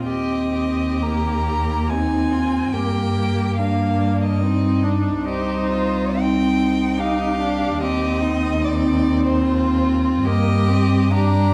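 The quartet is heard from further back in a recital hall, with a wet reverb that gives every note a lingering tail. This slow, romantic classical movement in Eb major moves in 3/4 at 58 to 77 BPM with a free, rubato feel, and its mood is serene and warm. All four bowed parts play throughout the 11.5 seconds of this passage cut from a longer piece. A first violin with a focused, vibrato-rich tone carries the melody between C5 and Bb5, while a second violin adds a smooth-topped, intense line beneath it. The viola, clear and somewhat distant, fills in the accompaniment, and the cello sits up front with a soft attack, expressive portamento and a full, rich bass, the lower pair sounding a little stronger than the violins. The harmony settles on Eb, passes through C minor, and returns to Eb over G by 10.3 seconds.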